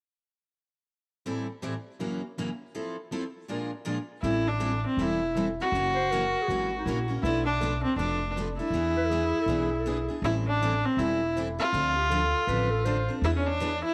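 Two picked acoustic guitars open this swinging, virtuosic excerpt of jazz manouche at 1.3 s: one bright with fresh steel strings, the other a plugged-in parlour guitar sitting in the background. At 4.2 s a clear, nasal bowed viola takes the melody up front with light vibrato, joined by a woody, thumpy pizzicato upright bass on gut strings. From 5.9 s a warm, soft-attacked clarinet adds a jazz-style second line with vibrato, all within light reverb.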